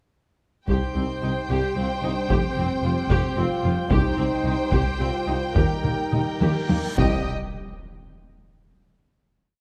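At 0.7 s the full orchestra and taiko drums enter together on a C minor theme, an epic, dramatic film-score cue in 3/4 at roughly 104-113 BPM. Hard-stick taiko pound out a big, compressed and saturated ostinato up front. Cellos play a driving bass ostinato, while a tuba and woody double basses in the background double the bass line. Violins carry a focused, lush melody over a soft-attack second violin line, distant violas keep up a rhythmic ostinato, mellow French horns hold tight sustained chords, and a pipe organ's principal chorus adds full, romantic-voiced chords behind them. The harmony moves from Cm through Fsus2 and back to Cm before Eb and a final Cm. A drum fill at 6.4 s and a huge, dark reverse cymbal swelling beneath lead to a low impact at 7.3 s, which rings out in a moderate recital-hall reverb to close the piece.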